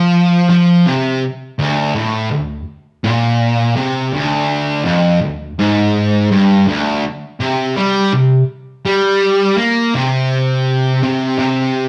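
The recording has the rough, unpolished character of a rehearsal room, with a moderate stone-room reverb that lingers for about 1.1 seconds. A lone electric guitar, double-tracked, distorted and thick with fuzz, sits up front for the full 11.9 seconds of this fragment cut from a longer metal piece. Its picked notes stay low, moving between D2 and Bb3, and the fuzz gives them a warm, saturated weight. The mood is ominous and heavy, set in a straight 4/4 feel with the tuning pitched slightly under standard at A4 = 439 Hz.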